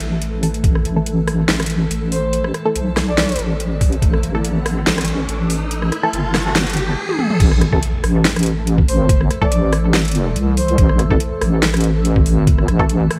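A deep, wobbling square-and-sine bass sits up front in this dark, brooding deep dubstep excerpt at 142 BPM in A minor with a half-time feel, joined by a cloudy granular pad in the background, muted dub chord stabs with phaser and echo under a filter sweep, an overdriven house kit with fat snare and metallic hats, a gritty pitched-down kick, a riser that builds from 2.9 seconds into a drop and impact at 7.4 seconds, and a breathy flute-like lead with tremolo and vibrato, all over light reverb and vinyl crackle.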